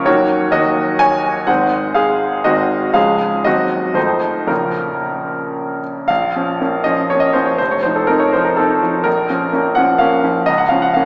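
A bright, brilliant grand piano plays alone, sounding intimate and up front, with audible action noise and long sustain as it moves between F1 and Ab5 in this passionate, stormy romantic character piece in B-flat minor. The rubato 3/4 pulse runs around 110-130 BPM, and harmonies such as Ebm7, Ab7, Db and F7 twice resolve to Bbm as the opening phrase returns at 6.1 seconds. A wet church reverb surrounds the playing, though the recording has a small-speaker sound, and the passage is cut from a longer piece.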